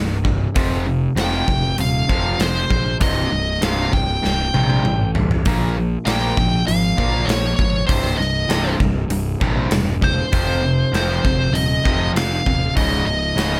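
Driving and heavy, this hard rock clip in C phrygian moves at 98 BPM in a straight 4/4, with a cranked stack guitar and a tight distorted guitar playing bright, picked riffs in the background while a fuzzy, overdriven picked bass sits up front. A gated 80s drum kit with a punchy kick and medium-tuned snare in a bright stone room pounds from 0.2 seconds and breaks into a fill at 4.2 seconds. A nasal lead guitar with a parked wah and slapback echo carries the melody from 1.2 seconds over chords moving from C5 through Cm and Bb5 to a closing Dbsus2, all in a dry, close sound.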